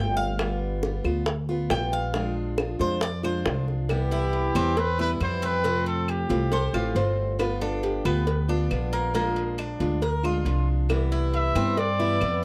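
Latin music in the Cuban son and guajira tradition, this sunny, relaxed passage is cut from a longer piece and has a straight, easygoing pulse. A metallic, double-strung Cuban tres opens with a solo of picked arpeggios over a boxy old ladder-braced acoustic guitar, whose picked accompaniment carries audible finger squeak. An up-front, growly upright bass plays thumpy pizzicato, while tight, high-tuned bongos and cowbell struck with hard hands join almost at once, and woody, band-limited claves sit in the background. At 3.9 seconds a punchy trumpet with vibrato takes the melody, sounding roomy yet up front. A bright, fingerpicked nylon-string guitar adds a classical second line from 6.5 seconds, and the trumpet returns at 11.4 seconds over seventh and ninth chords, all captured in a dry, close 1970s-style studio sound with small room ambience.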